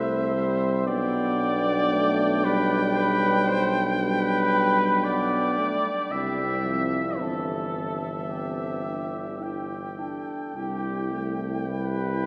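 From the outset a tender, lyrical brass-band hymn unfolds in a rubato three-beat lilt, with a clear, close-miked cornet singing the high melody with vibrato over a warm, up-front flugelhorn's second line, two euphoniums (one mellow and soft-edged, the other smooth-topped) murmuring accompaniment in the background, and a present tuba anchoring the bass, all bathed in a long, wet cathedral reverb as this short fragment of a longer piece comes to rest on a C chord at 10.5 seconds.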